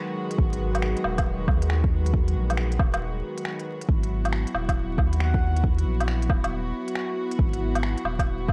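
A dry, gritty hardware sound with vinyl crackle frames this wistful, melancholic future garage excerpt at 137 BPM with a swung 16th feel, as a rich, floating string section bowed sul tasto holds soft-attacked chords, moving from G#m7 to Esus2 at 3.9 s, roughened by 12-bit sampler grit and sidechain pumping. A deep, overdriven electronic kick sits up front beside a round sine sub bass that also pumps, while an overdriven organic electronic kit of finger snaps, smooth hi-hats and woodblock carries the shuffle, both drum parts re-recorded in a large room. At 5.2 s a breathy, flute-like synth lead with vibrato, subtle chorus and tape echo briefly touches a single high note in the background.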